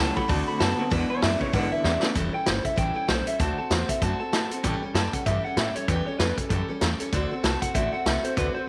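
A slightly broken-up electric guitar through a small old amp carries the melody, its dark, lo-fi tone trailed by tape echo, and it opens this rowdy, retro rockabilly excerpt with a clean solo turn. The piece moves at a brisk 193 BPM in 4/4 with a swung eighth-note feel, and the opening passage moves through D7 and E7 before settling into A7. A second electric guitar, bright and twangy with tremolo, plays a low riff beneath the lead until 2.1 seconds. A full-bodied jumbo acoustic guitar, picked, keeps up the accompaniment throughout, while a woody, thumpy upright bass on gut strings anchors the low end. The vintage drum kit sits up front with a punchy kick, a medium-tuned snare and a rolled-off top, and it plays a fill at 1.8 seconds that leads into the next section at 2.2 seconds. Light reverb and small-room ambience give the recording an intimate, old-fashioned feel.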